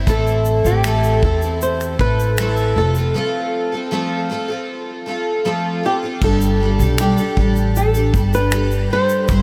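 A shimmering, double-tracked twelve-string acoustic guitar and a woody, up-front pizzicato upright bass open this easy-going, carefree acoustic pop excerpt at 78 BPM in G mixolydian; they are joined almost at once by a dark, fingerpicked flamenco guitar melody trailing tape echo and an airy small-room drum kit of punchy kick, crash cymbal, finger snaps and shaker, moving from Am to F before a break at 3.1 seconds and a shift to Gsus2 at 6.2 seconds, the whole dreamy mix soaked in a huge ambient reverb.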